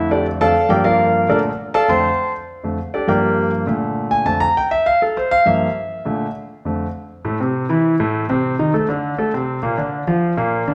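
A brisk, straight 4/4 pulse at 202 BPM drives this sophisticated, danceable solo jazz piano passage in F major, tuned to A4 = 436 Hz and cut from a longer piece. A concert grand, up front, intimate and polished, with deep bass, long sustain and audible action noise, circles F6/9, Gm7 and Bbmaj7 through the opening section. At 7.2 s it turns toward Am, Adim, D5 and Bb, all set in a wet large studio reverb with a 1.3 s decay.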